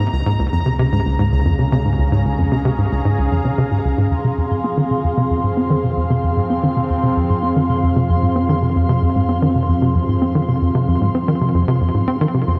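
A punchy, detuned sequencer bass drives this hypnotic, mysterious stretch of ambient space music, its plucky riff up front and dressed in lush chorus and delay. Alongside it a warbling, vintage resonant pad fades in across the full 12.6 seconds with shimmer reverb, while a nasal analog drone enters at 0.4 s in the background. A mellow, tempo-synced gated texture pulses high above, as the harmony moves from Db to F minor inside a dreamy mix soaked in reverb.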